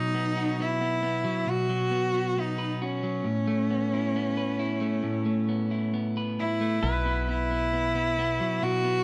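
Close, detailed microphones and a light reverb frame this slow, melancholic folk passage at 67 BPM, cut from a longer piece. A rich, intense bowed cello carries the melody up front with vibrato and a smooth top, alongside a picked, compressed electric guitar on the edge of break-up that glows warmly, also up front, across Esus2/B and Aadd9 chords. At 6.8 seconds the harmony moves to Bsus4 as a clean pedal steel guitar, played with fingerpicks and slide, adds background volume swells, and a woody, round, hollow-body fretless bass sounds a dark, direct low note until 8.4 seconds.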